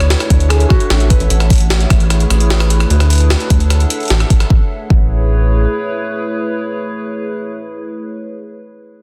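A dense, heavily limited IDM fragment bathed in light digital ambience sets a wistful, intricate mood: a warbling, detuned tape-like pad with chorus and sidechain pumping holds sustained chords until 7.8 seconds over a rubbery, wave-folded square bass and a gritty, pitched-up jungle sampler kit of hi-hat, rim click and soft-clipped high-tuned snare, joined at 0.3 seconds by a deep, up-front electronic kick, while a felt-muted upright piano with tape echo plays a brief background melody that stops at 1.3 seconds.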